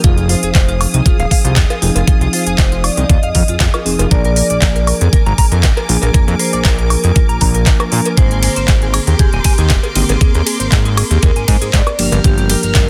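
Nu-disco cut from a longer piece, sleek and groovy at 118 BPM in F dorian with a light sixteenth-note swing, moving through Fm7, Bb7, Abadd9(#11) and Gm7. A knocking electronic kick and a fat, detuned sawtooth bass with an evolving filter sweep sit up front, while a pop kit adds handclaps, crisp hi-hat, ride and woodblock, and a saturated cowbell joins in the background at 1.7 seconds. A bright, scooped direct-recorded guitar plays a riff through analog chorus, a reedy electric piano pumps with sidechain under bowed symphonic strings with light vibrato, and a metallic, ringing vibraphone carries the melody through dub echo, all in a dense, heavily limited modern mix with little reverb.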